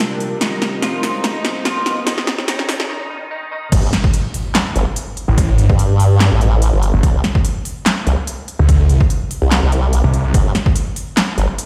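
Heavy wobble dubstep at 145 BPM in a half-time, lightly swung feel, menacing and chaotic, opening on a build-up where a bright, clean semi-hollow electric guitar melody with chorus and delay floats over dark, bowed strings under a filter sweep, an airy, breathy pad, a rising effect and a punchy, overdriven big-room drum kit with crisp hats, handclaps and a crash. After a short break, the drop hits at 3.7 seconds with an impact, an up-front overdriven kick and a wobbling formant-sweep bass over Gsus2 and Csus2, joined at 5.3 seconds by a snarling, growling distorted saw bass. The mix has the stone-room reverb of a big sound system played in a bare room, and this excerpt is cut from a longer piece.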